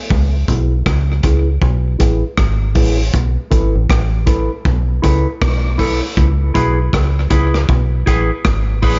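Dub reggae in C# minor at 79 BPM with a swung, heavy and hypnotic feel, this excerpt sits on a single C#m7 chord as a deep, round, foam-muted fingered electric bass and a gritty, saturated breakbeat kit of hi-hat, punchy kick and rim click play up front in a small room, while a clean picked electric guitar enters at 0.5 seconds through tape echo and a low-pass filter sweep.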